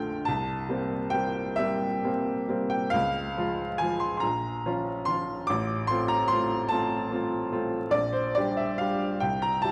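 Nostalgic and serene, this excerpt from a romantic classical nocturne for solo piano drifts at 44-50 BPM in 12/8 with a rubato feel in F major, tuned slightly sharp to A4 = 441 Hz. A warm, woody upright piano sits up front with a natural tone and long sustain, spanning A1 to D6 across its 9.7 seconds and moving from C7 through Db, Bbm, F/A and Gm/Bb before settling on C at 9.2 seconds. The instrument rings in a moderate concert hall reverb, set against vinyl crackle and a faint mains hum.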